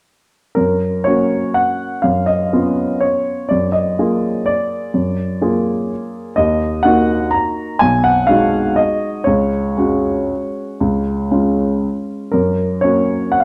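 A lilting 3/4 waltz pulse moves with rubato, the tempo flexing between 112 and 132 BPM as the phrases breathe. This is a playful, graceful classical piano waltz in F# major, tuned to A4 = 438 Hz, and taken from a longer piece. A solo upright piano carries everything from 0.5 s to 13.4 s across a range of B1 to A#5, its warm, woody, polished tone sitting up front and present. The harmony moves from F# through C#7/F# and A#7/F# to D#m, then G#m7/B and a C#sus4 that settles onto C# before returning home to F# at 12.3 s. Close, detailed microphones capture the instrument, while a moderate recital-hall reverb of about 1.6 seconds gives it a sense of space.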